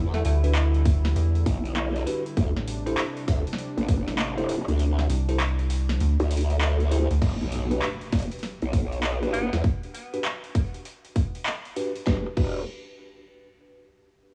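Swung sixteenths drive this gritty, playful glitch hop excerpt in 4/4, cut from a longer piece, with a punchy, up-front electronic kick alongside a dubstep kit of huge snare, metallic hats, handclaps and crash cymbal, both carrying a tape-softened small-room ambience. Two basses anchor the low end: a growling, aggressive, wobbling bass with formant-filtered, saturated grit, and a rubbery, hollow square bass that bounces darkly alongside it. A detuned sawtooth pad holds smooth sustained chords with sidechain pumping, while a bell-like tine electric piano scatters bright, clean stabs through what sounds like built-in speakers. The opening drop moves from Em7 to D7sus4, and the kick falls away at 4.8 seconds before an electronic impact sounds in the background at 7.2 seconds, where the pad and square bass stop and a filter sweep on the electric piano begins over a rootless Em7. A clear, jazz-style tenor saxophone with light vibrato and scooped notes appears only in brief solo phrases, returning at 9.3 seconds with analog delay, all caught on a lo-fi home cassette recording with little reverb.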